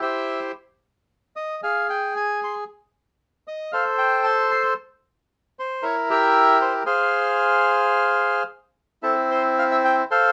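Tense and sultry, this short tango fragment, cut from a longer piece, sits in F minor at 114 BPM in 4/4, though the rubato feel lets the pulse stretch and breathe. A lone bandoneon carries everything as a solo voice across its full 10.3 seconds, ranging from C4 to C6 with a reedy, vintage, band-limited tone placed up front in the mix. The harmony moves from C through stretches of unaccompanied line, touching Am7, Edim7 and Fm before a new section opens at 9.0 seconds on a C6 chord. A moderate studio ambience with a short decay keeps the instrument close and intimate, letting the grain of the reeds come through.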